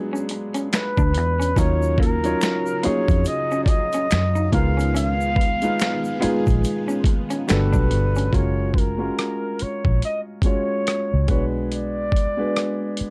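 A swung 71 BPM groove in 4/4 drives this soulful, smooth neo-soul R&B excerpt in F# major, led by a gritty, overdriven boom bap sampler-style kit with a thumpy kick, sitting up front beside a round, foam-muted fingered electric bass and a boxy concert grand piano as accompaniment. A bucket-muted trumpet carries the melody from 0.7 s, veiled and roomy with light vibrato and scooped notes. Beneath it a slightly broken-up, lo-fi electric guitar plays a second line, a close, dry tube shaker and finger snaps add percussion, and a lush vintage string machine with phaser and ensemble chorus holds sustained chords in the background; these three stop at 8.3 s as the harmony lands on F#maj9, leaving drums, bass, piano and trumpet in a dark production with light reverb.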